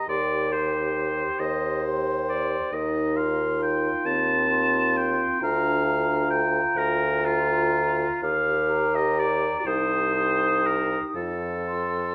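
This classical slow romantic movement for wind quintet, cut from a longer piece, unfolds serenely in 6/8 at 39-46 BPM in Bb major, with rubato phrasing over chords moving from Cm/Eb through F7/Eb and Bb/D toward F. An airy, distant silver flute carries the high, tongued melody, while a clear, up-front oboe sings a second line. Oboe and bassoon both carry light vibrato, with the mellow, roomy bassoon anchoring the bass beneath a warm clarinet and a punchy, smooth-topped French horn set in the background, all in a moderate recital-hall reverb.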